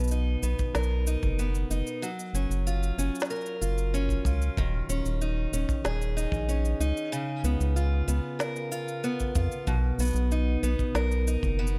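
Wistful and intimate, this folktronica passage from a longer piece moves at 94 BPM in a straight 4/4, drifting through Bmaj7, Gbmaj7, Eb7sus4 and Db6 before returning to Bmaj7. Up front, a picked acoustic archtop guitar plays arpeggios with audible finger squeak and a touch of tape echo, while a deep, round analog bass with a fast-attack filter pluck and dark sustain anchors the low end. An overdriven electronic cabasa and woody snare add a produced texture, a punchy acoustic kick drum joins at 0.6 s, and the whole mix stays dry with little reverb.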